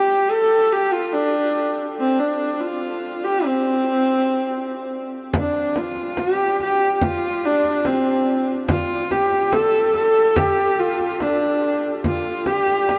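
Mongolian folk at 72 BPM in C zhi mode, this proud, vast passage, cut from a longer piece, opens with a lone bowed horsehead fiddle carrying the melody in a biting, nasal, husky voice with light vibrato and portamento; at 5.3 s a deep, close and dry frame drum struck with hard hands joins it, and the recording is heard from further back in a huge ambient reverb.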